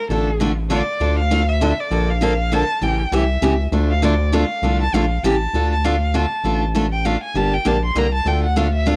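A swung 3/4 lilt at 199 BPM drives this short, fiery yet bittersweet cut of acoustic gypsy jazz in D minor, moving through chords such as Bbmaj7, A7#9 and Gm. A rich, expressive bowed violin carries the melody from the first moment, singing with vibrato and portamento, while a bright picked steel-string guitar with fresh strings and audible finger squeak supplies the accompaniment from 0.1 seconds. Underneath, a round, deep analog bass with a fast attack and sustained, mellow tone is colored by tube saturation, and the violin and guitar carry a cassette tape grain inside light small-room ambience that gives the whole a homespun feel.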